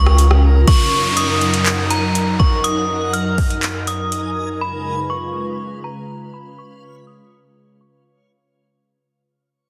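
A ringing, inharmonic FM bell carries the melody high in the register, its metallic tone thickened by chorus and trailed by digital delay, in this blissful, dreamy slice of atmospheric cloud-rap with a half-time hip hop feel. Beneath it, a glassy, ethereal FM pad holds slow-blooming chords through the whole passage, softened by a low-pass filter and blurred by its own reverb and ensemble chorus. A deep, boomy 808-style bass sounds at the very start and decays by 0.6 seconds, sitting up front and dark. A smooth, electronic R&B kit with a soft kick, hi-hats, rim clicks and handclaps plays until about 4.2 seconds, its sound carrying the air of a large room. Faintly behind the pad, a reversed, detuned granular texture swells through, while an electronic downlifter sweeps in from 0.7 seconds as the whole passage fades under a filter sweep within a dense, heavily limited, modern mix.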